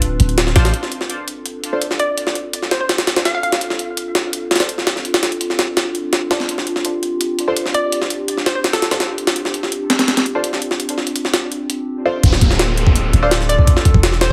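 Drum and bass in a jungle vein at 167 BPM in D minor, this nostalgic, atmospheric excerpt opens on a Dm7 from a warbling, lo-fi tape-like pad that is filter-swept from 0.7 seconds. Over it sit gritty, pitched-up sampler-style drums with a thumpy kick and high-tuned snare, nasal band-passed chord stabs with phaser and dub echo, and bouncy, detuned square plucks carrying the melody. The deep, boomy 808-style bass returns with an electronic downlifter at the drop at 12.2 seconds, all heard through a heavily compressed radio-like sound with plate reverb and a faint mains hum.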